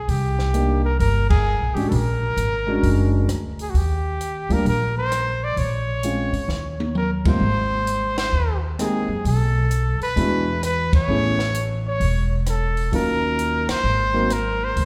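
A clear, close-miked trumpet carries the melody up front with a light vibrato, leading a playful small-group swing and bop excerpt in Eb major at 131 BPM with a lilting swung feel. Beneath it, a woody, thumpy pizzicato upright bass on steel strings sits forward in the mix, while a compact cocktail drum kit supplies dry, natural time on ride cymbal, hi-hat, snare, kick, rim clicks and toms, its dark cymbals set against a high-tuned snare and punchy kick. A concert grand piano comps from 0.5 seconds with an intimate, deep-voiced tone, long sustain and audible action noise. The harmony moves through colourful changes such as Cm9, Bb7alt and Abmaj9, and the band hits accents together, with a drum fill from 6.5 to 7.4 seconds leading into the second section. A lush recital-hall reverb gives the group a spacious, resonant setting, and the passage is cut from a longer performance.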